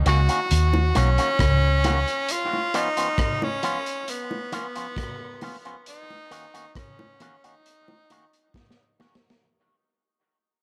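A straight, unhurried 4/4 groove from a crunchy breakbeat kit underpins this meditative, hypnotic dub reggae fragment: a tight kick, a medium-tuned snare, rim clicks and hi-hat, all saturated and gritty with a rolled-off top in a small room. A vintage muted fingered electric bass sits up front with a round, foam-muted, amped tone, but it drops out at 2.0 seconds, and a break follows from 2.3 seconds as the harmony moves from Ebm7 to Db7 and back to Ebm7. Over this, a bright tenor saxophone carries the solo melody in a pop style, with light vibrato and a smooth top, its phrases trailing into dub echo. An electric guitar through an envelope filter gives clean, picked, compressed accompaniment, also soaked in dub echo. Low-tuned bongos sit in the background with a rounded, echoing sound, and the whole passage fades out under light studio reverb, closing on a drum fill from 8.5 seconds.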